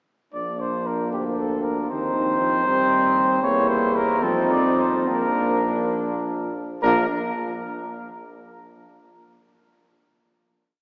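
At 0.3 seconds a brass quintet enters together on a Bb major chord, a short, triumphant classical piece in a flexible 6/8 that moves at 67-80 BPM in dotted quarters with a rubato feel. A dark, distant cornet carries the melody up front, while a trumpet with light vibrato and a smooth top traces an independent second line in the background. Beneath them, a mellow trombone with a soft attack and a roomy French horn supply inner lines and sustained chords that follow the rhythm of the tune, over a clear, vintage-toned tuba holding sustained bass notes with passing tones. The harmony moves through Cm/Eb, Edim and an open F chord back to Bb, and the pace slows from 2.7 seconds before the group settles on a final open Bb chord at 6.8 seconds. The sound is bathed in a long church reverb with a 3.7-second decay, heard through a small-speaker character.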